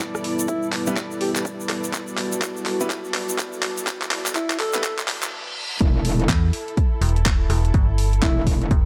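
A metallic wobble bass crashes in at 5.8 seconds, saturated and up front with chorus and sidechain pumping, and a digital FM bass joins it at 6.3 seconds to drive the drop of this aggressive, bouncy bass house excerpt in E minor at 124 BPM with a swung sixteenth feel. Before that, the build-up rests on a punchy, overdriven electronic kick and a garage kit of handclaps, rim clicks and bright hi-hats, with a drum fill running through the first 5.3 seconds and a grainy, close egg shaker adding detail. A moody, detuned analog pad holds sustained chords over an Em harmony throughout, pumping against the kick, while a veiled, muted string section sits distant behind it. A brilliant grand piano plays stabs in the background under a filter sweep and dub echo, and a mellow alto saxophone with vibrato drops in short echoing phrases. A reverse cymbal rises into the drop, and the whole mix carries light reverb and a small room ambience.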